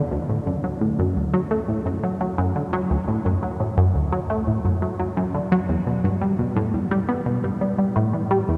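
A steady, straight 4/4 pulse at 86 BPM drives this hypnotic, cosmic ambient fragment, cut from a longer piece. A single tight sequenced synth carries it alone from 0.1 to 8.6 seconds, ranging from D2 to B3 and sitting up front. Its detuned sawtooth tone has a fast-attack filter pluck that still sustains, with a mellow edge, and chorus, phaser and delay shape its sound. Everything lives in a vast, echoing cathedral reverb with a long 7.2-second decay, so the driving sequence hangs in the air. The music moves into a new section at 5.7 seconds and carries on until the fragment ends.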